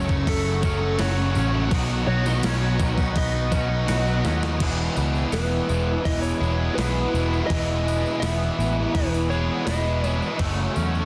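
A blissful, hazy shoegaze and dream pop clip that moves at an unhurried straight pace, its wall of three overdriven guitar riffs (one double-tracked and bright, one biting with reverse reverb, one crunchy with analog chorus) sitting in the background beneath a slightly broken-up lead guitar melody through digital delay, which stops at 10.2 seconds. A twangy clean guitar picks arpeggios through lush chorus and delay, while a very quiet vintage string machine holds slow-attack sawtooth chords with phaser. A round, foam-muted bass sits up front alongside a thumpy 12-bit drum machine and a jingly tambourine, with a drum fill leading into the second section at 4.6 seconds in a dense, heavily limited, nearly dry mix.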